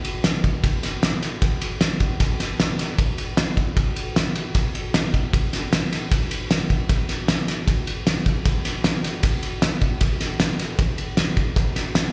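Upbeat and retro, this straight 4/4 rock passage at 154 BPM, cut from a longer piece, features a cloth-damped, thuddy acoustic drum kit playing kick drum, ride cymbal and snare drum for the full 12 seconds, with a tight kick, fat snare and dark cymbals set up front in a gritty, saturated, rolled-off sound, all heard as a live gig through the venue's PA with a moderate plate reverb and recital hall ambience.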